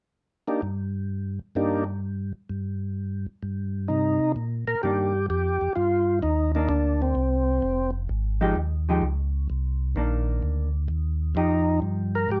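Heard through a moderate club reverb, this smoky soul jazz organ trio fragment swings its eighths with a bluesy lilt in 4/4. A lightly overdriven tonewheel organ carries the melody up front with a full, percussive tone, its second-harmonic percussion, key click and vibrato turning through a slow rotary speaker. Beneath it, a second tonewheel organ supplies the bass line, mellow, round and clean, also spinning on a slow rotary. A dark, fingered hollow-body electric guitar joins at 4.8 seconds with accompaniment over Cm9 and Fm9 changes, which follow an opening Gm and a brief chordless stretch. The lead organ drops out at 7.9 seconds, leaving bass and guitar to hold the groove, then returns at 11.4 seconds as the passage cuts off.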